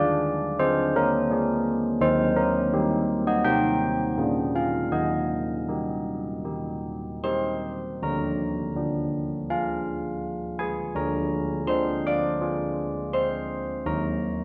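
A classical tune for church bells, this short passage cut from a longer piece moves at 82 BPM in a straight 4/4 with a festive yet serene mood. A solo carillon carries everything, ringing from D3 up to D6 with a bronze, bell-like tone whose minor-third overtone colours each strike, softened by a padded clapper into a mellow, dark and smooth sound placed up front. The harmony circles through Bb7, Eb and Cm in the opening stretch before a second section from 8.0 s leans on Bb/D and Bb7/D, settling on an open Eb5 at 13.9 s. A moderate reverb like a scoring stage, with a 1.9-second decay, lets the bells bloom around the melody. The whole recording carries the character of worn old cassette tape, with a warbly pitch drift and a muffled top end that adds a faded haze.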